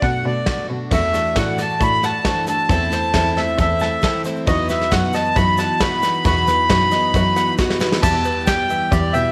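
Lightly reverberant, this bittersweet, yearning indie folk excerpt sets a reedy, up-front accordion melody over a shimmering twelve-string acoustic guitar, a veiled, bowed cello bass and a soft brush drum kit with a punchy kick, while from 0.9 s a dark, woody upright piano with audible action noise, a twangy fingerpicked banjo playing arpeggios and a grainy, very quiet egg shaker fill out the building arrangement, with a drum fill at 7.6 s leading into a new section at 8.0 s.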